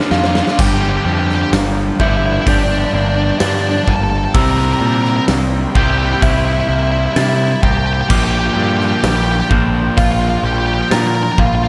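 Light small-room reverb gives this cathartic, melancholic post-rock passage a close, contained sound, cut from a longer piece. A huge acoustic arena kit opens with a brief fill in its first 0.6 seconds, its punchy kick, medium-tuned snare, hi-hat and crash ringing in a big natural room. Then the band settles over Gm7, C7 and Bb6 chords in a straight 4/4 feel. Up front, an octave-fuzz lead guitar carries a dark, distorted melody with slapback echo, while a growling, bright picked bass with overdrive and a crunchy overdriven guitar riff fill out the low end. Beneath them, a very quiet twangy, clean electric guitar picks arpeggios, and a mellow, bell-like glockenspiel played with rubber mallets rings its own arpeggios in the background with slapback echo. A distant, dark chamber string section holds expressive bowed chords with vibrato, adding a faint melancholy haze to the cathartic weight.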